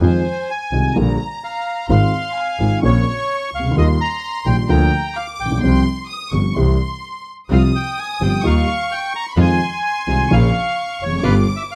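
A reedy bandoneon carries the melody in plate reverb, opening this melancholic, dramatic F minor tango excerpt at 129 BPM with a rubato feel, over a dark, woody upright piano with audible action noise, a biting bowed double bass with vibrato, and a smooth violin section playing a high second line, before a soft-attacked chamber string section adds floating sul tasto stabs in the background from 7.5 s, all heard through close, detailed microphones in light reverb.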